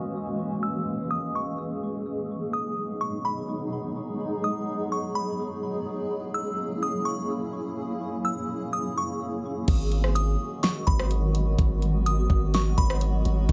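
Atmospheric cloud-rap in a hazy, spacious half-time feel, this piece opens on a granular cloud pad that holds sustained chords from the start, its blurred, wave-folded tone softened by built-in reverb, sidechain pumping and a low-pass filter while a filter sweep runs through the first 9.7 seconds. Almost at once a delicate synth tine bell enters with a tinkling, high FM melody, shimmering through chorus and tape echo. The harmony drifts between F#9 and G#m7, giving the opening a suspended, dreamlike quality. At 9.7 seconds a smooth R&B drum kit arrives up front, with a knocking kick, fat snare, rim clicks, warm hats and a crash, sounding as if re-recorded in a small room. Alongside it, a deep, sine-like 808-style bass enters with long decaying notes, grounding the cloudy texture in a light digital ambience. The passage is cut from a longer piece.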